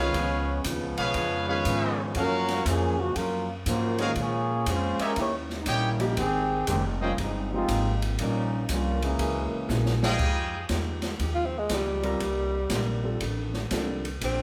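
A swung 4/4 groove at 119 BPM drives this sultry, dramatic big band swing piece in F minor: an open drum kit with dark cymbals and a boomy kick sits beneath a woody, growly pizzicato upright bass, while an intimate grand piano with audible action noise and a clean, compressed hollow-body electric guitar fill in the harmony from the background. Up front, a tight, smooth-topped trombone section carries a solo until 10.2 seconds against stabs from a bright, present trumpet section, and after a drum fill a mellow, breathy tenor saxophone with subtone and scooped notes takes the solo from 11.3 seconds. The band plays live together in one large studio room with moderate reverb.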